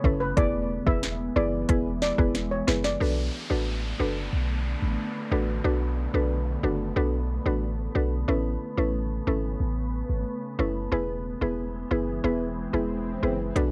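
A straight 4/4 dancehall groove at 91 BPM opens this sunny, bouncy clip in E mixolydian, with a produced electronic drum kit of deep kick, sharp snare and crisp hats playing a fill before dropping out at 3.0 s, while a dark, shimmering steel pan with tape echo carries the brief melody above it. Underneath, a boomy sine 808-style bass and a woody, round mallet-like synth pluck with chorus stay up front throughout, and a glassy, ethereal FM pad pumps under sidechain with its own reverb, the pad, pluck, drums and pan all bearing a cassette-tape grit. After the drums stop, the chords move through Bm7 and Aadd9 back to E as an electronic downlifter and swell lead to an impact at 13.6 s, where the kit briefly returns.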